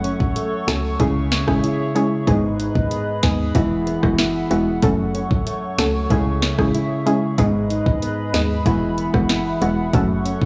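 An up-front afro-pop drum kit with a deep kick, sharp snare and warm hats, roughened by vintage 12-bit sampler grit, drives this sunny, summery dancehall excerpt at 94 BPM in E major. A gentle, dark pluck with chorus plays the accompaniment, while a full-bodied, thumb-plucked nylon-string guitar spins arpeggios and a woody, mellow FM bass holds the low end. Above them, a hollow, flute-like pad sustains the cycling F#m, C#m, G#m and Eadd9 chords with chorus and sidechain pumping, all set in a small room with light reverb.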